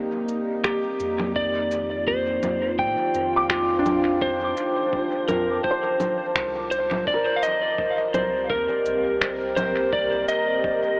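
Heard through a huge ambient reverb and a narrow AM-radio tone, this deep, meditative ambient dub excerpt at 84 BPM in C dorian floats on a slow-attack, chorused dark pad and felt-muted upright piano arpeggios with dub echo, while an up-front, slightly broken-up electric slide guitar carries the melody from 0.6 seconds over overdriven electronic shaker, finger snaps and congas, a muffled, thumpy kick set in the background, a round, soft dub sub bass, and a bubbling, resonant stepped-filter texture that drops out at 7.1 seconds as the harmony moves from Cm9 and F13 to Cm7.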